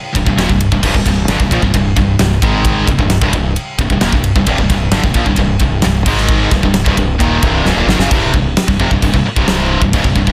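A polished, airy acoustic rock kit with a fat snare, punchy kick, crash and ride sits up front as this relentless heavy metal passage, cut from a longer piece, opens beside a very quiet double-tracked high-gain guitar riff, quickly joined by two more bright, distorted, picked guitars in the background and a growling, overdriven fingered bass played direct and amped, the mix dry and densely limited, with a drum fill at 7.7 s leading into a new section at 8.1 s.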